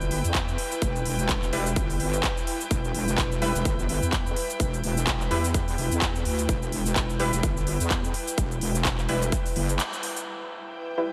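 The excerpt rides a swung 4/4 groove at 127 BPM in E minor, with a punchy, tape-warm electronic kick entering at 0.3 seconds beneath a crisp, up-front big-room kit of handclaps, hi-hat and shaker. This is gritty, swaggering bass house, and a heavy, saturated wobble bass dominates the low end from E1 to E2, its detuned square and sine tones thickened with chorus and sidechain pumping. Soft, floating bowed strings hold a close, sul tasto texture above, also pumping, while a bold, bright orchestra-hit-like synth stab arrives at 1.5 seconds and sits in the background with its own reverb and delay. A full-band accent lands at 9.8 seconds, and at 10.8 seconds a deep, dark ambient pad appears very faintly on B3. The whole mix feels dreamy and soaked in a moderate cathedral reverb over a single E minor chord.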